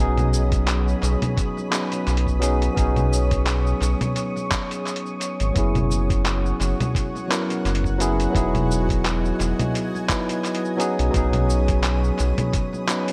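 An echo-heavy, lightly reverberant mix carries this relaxed sunset chillout excerpt in B major at 86 BPM with a swung 16th feel, where an up-front tine electric piano with dub echo plays clean accompaniment over a round, deep analog bass, a shimmering, ethereal pad with chorus holds dark, detuned chords, and a gritty, dusty soul sampler-style kit of cabasa, congas, handclaps and hi-hat with tape echo enters at 0.2 s, joined at 0.5 s by a thumpy, compressed electronic kick.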